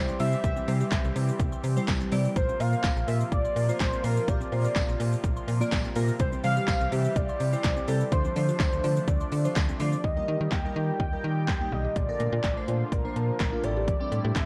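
A punchy, overdriven pop drum kit sits up front in this bittersweet, driving dance-pop excerpt at 125 BPM in 4/4, its fat snare, crisp hats, handclaps and shaker sounding layered and electronic with the grit of a small room. Beneath it, a snappy, slap-like FM bass with a metallic attack carries the low end and pumps with the sidechain, as do glassy digital keys with a filter sweep and a soft, airy supersaw holding sustained detuned chords in the background. Over the top, a velvety synth lead sings the melody with chorus, vibrato and dub echo, while a very quiet, woody mallet-like pluck traces arpeggios through chorus and phaser. A jingly, band-limited tambourine joins at 0.9 s and drops out at 9.7 s, shortly before the harmony shifts at 10.0 s from a C, Bbsus2 and Dm7 progression to Eb, Bbmaj7 and Am7. The whole mix has light reverb and a worn cassette character with warbly pitch drift.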